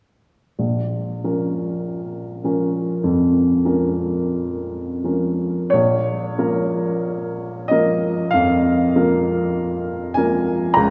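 Drenched in a vast, echoing cathedral-like reverb, this brief excerpt of a melancholic, yearning romantic nocturne features a woody, natural upright piano placed up front, playing alone with free rubato from 0.6 seconds and moving into a new section at 5.7 seconds before ending at 10.9 seconds.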